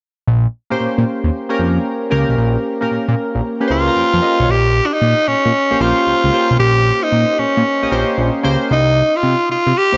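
A moderate plate reverb lends a roomy sheen to this dark-topped recording, cut from a longer piece of bouncy, punchy new jack swing R&B with a swung sixteenth-note feel in 4/4. A fat, thick analog bass built from detuned sawtooth and square waves opens at 0.3 seconds, sitting up front with a fast attack, sustained notes and a filter sweep with a moving notch. Warm analog keys join at 0.7 seconds, their round, detuned tones colored by ring modulation, chorus and shimmer reverb, striking quickly and decaying over a Bbm69 chord. At 3.7 seconds a raspy tenor saxophone takes the solo melody, gritty and forceful yet smooth on top, with light vibrato and a pop-style delivery bathed in shimmer reverb. The harmony moves to Cm at 8.7 seconds, and all three parts stay prominent through the close.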